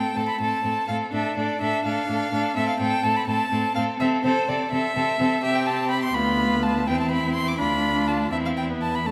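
A first violin sings a clear, focused melody up front from the outset, joined by a second violin's smooth-topped line and the viola's close, bowed accompaniment, with the cello's rich, soft-attacked bass entering at 0.2 s and sliding expressively between notes. This quick classical-period movement for string quartet moves in 6/8 at 83 BPM with rubato, restless and dramatic in A minor before turning toward C major at 5.4 s. Vibrato colours every voice, and a moderate concert hall reverb surrounds this brief cut from a longer piece.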